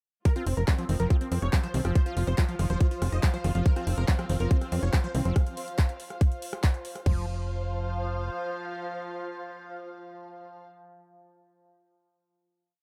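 Alien and intense, this psychedelic trance piece at 141 BPM drives a straight 4/4 drop from 0.3 seconds with an up-front four-on-the-floor electronic kick, a big-room dance kit of metallic programmed hats, claps, rim clicks and crash, a tight galloping sixteenth-note sequencer bass with ring-modulated bite, a squelchy distorted acid line with tape echo in the background, a punchy detuned supersaw stab riff over a pedal note colored by phaser, 12-bit sampler grit and digital delay, a dark sul tasto string section with light vibrato, and an evolving chorused drone with moving overtones joining at 1.0 seconds, while a very quiet formant-sweep wobble bass flickers at 4.7 seconds, the stab, drone, acid bass and strings all pumping to the sidechain before the stab, drone and strings hold a final chord from 7.1 seconds.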